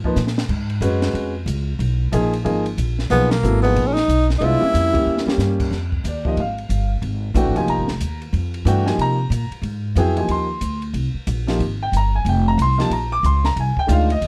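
Closely miked and nearly dry, this short excerpt from a longer modal jazz piece has a detailed, intimate sound. It swings at 184 BPM in 4/4 with a searching, intense mood, moving from G# dorian into F dorian at 5.7 s. The upright piano comps throughout with an open, woody tone and long sustain, while the pizzicato upright bass sits up front, thumpy and warm. A compact cocktail drum kit stays lower in the mix, its dark, smooth sound, high-tuned snare and punchy kick marked by a couple of short fills and a band accent. A breathy tenor saxophone steps forward only from 3.1 to 5.3 s, playing a whispered, mellow solo line with soft attacks and vibrato.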